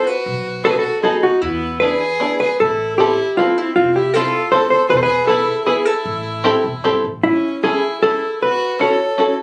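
Captured on a phone in a small room with moderate room reverb and club ambience, this excerpt from a longer piece is a whirling, charming musette waltz in A minor at 155 BPM with a rubato feel, where a dark, clean, compressed hollow-body electric guitar carries the fingered melody up front through plate reverb, a close, nasal, biting violin bows an earthy second line, a mellow, twangy, plunky open-back banjo fingerpicks the accompaniment up front, and a woody pizzicato upright bass sits low from 0.3 s until 7.2 s, when the harmony brightens from A minor to Amaj7 and F#m7.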